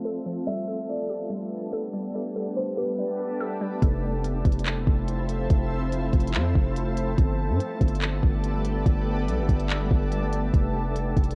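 A shimmering, detuned ambient pad floats through this dreamy cloud-rap excerpt, opening beside a muted, felt-softened upright piano with audible action noise and a glassy, crystalline wavetable pluck under a filter sweep, before a deep sine 808 bass and an up-front R&B drum kit of soft kick, smooth hi-hats and handclaps arrive at 3.8 s in a half-time groove, captured as a dry, low-passed home cassette recording.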